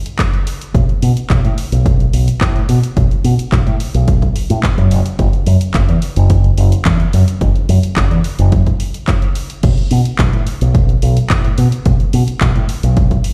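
Nu-disco with a cosmic, sensual mood and a straight 4/4 groove, cut from a longer piece. A punchy, tape-warm electronic kick drives it alongside a house kit of crash cymbal, handclaps and hi-hats, both carrying studio reverb. From 0.7 seconds a bright, up-front fingered electric bass with an envelope filter pumps with sidechain compression, ranging from F#1 to B2, and the mix sounds as if played on a big sound system in a bare room.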